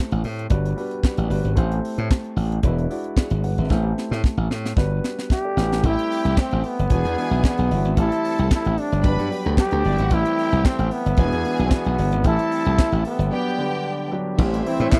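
Disco groove with a glamorous, driving mood, built on a dark, mellow grand piano, punchy slap bass and a tight, high-tuned funk drum kit with handclaps, where a raspy, growling trombone takes the melody at 5.3 seconds, joined by lush, bowed strings and very quiet stopped French horns holding chords, all in a dry, close 1970s-style studio sound, with a drum fill and a brief break along the way and a group handclap at 14.9 seconds.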